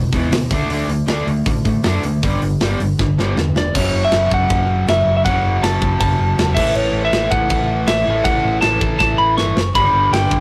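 Rebellious and energetic, this punk rock clip cut from a longer piece drives along at 159 BPM in a straight 4/4. A distorted, compressed electric guitar and an overdriven semi-hollow guitar sitting in the background both play riffs over power chords on E, D and G. Beneath them, a dark, round hollow-body short-scale bass, fingered and amped, holds the low end, while a tight metal kit with bright cymbals, a medium-tuned snare and a tight kick sits up front, marking the change with a fill at 3.0 seconds. At 3.6 seconds a lightly driven, slightly broken-up lead guitar enters with a high melody as the harmony moves through F#m, A and G, and a second drum fill arrives at 9.0 seconds. The sound is a rough rehearsal-room recording with light reverb, saturation and lossy compression artefacts.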